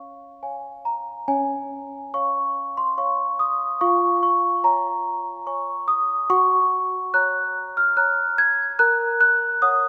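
A wet concert-hall reverb with a long 2.3-second tail surrounds this short classical lullaby, which is heard from further back in the room. A solo celesta carries the whole passage, its bell-like, delicate tone sweet and mellow from soft felt hammers, mid-forward and up front as it ranges from Db4 to Ab6. In an unhurried 3/4 at 72 BPM in Db major, a brief opening gives way at 1.3 seconds to a new section that moves from Db through Db/F to Gb and Gb/Bb, keeping a tender, innocent mood as the music is cut from a longer piece.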